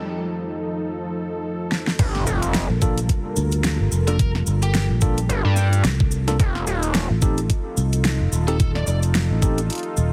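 Dry and heavily compressed like a radio broadcast, this funky, gritty glitch hop excerpt with a swung sixteenth feel opens on a dark, detuned analog pad under a filter sweep, building to a drum fill at 1.7 seconds as an overdriven dubstep kit enters with a huge snare, crash and hi-hat. At 2.0 seconds the drop hits with a very quiet electronic impact and an overdriven, knocking kick. Up front sit a saturated, aggressive sawtooth synth bass and a growly fingered electric bass, while a grainy cabasa rattles and a tine electric piano plays stabs through a combo amp with medium tremolo, dub echo and sidechain pumping. From 4.1 seconds a picked, biting lead guitar carries the melody with lo-fi 12-bit sampler texture and dub echo over Gm9 and F7 chords.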